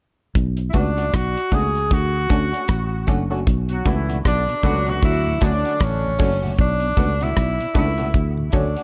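Light reverb and studio ambience frame this serious, laid-back roots reggae excerpt, where a dry, dark damped 70s drum kit and a round, foam-muted fingered electric bass sit up front beneath a vintage tenor saxophone with vibrato, scooped notes and tape echo, while a slightly broken-up electric guitar with tremolo and tape echo and a detuned, chorused sawtooth dub chord stab stay in the background, a clear, tight horn section with tube saturation and tape echo joins from 3.7 to 6.2 seconds, and a very quiet tonewheel organ with key click and slow rotary enters at 3.7 seconds.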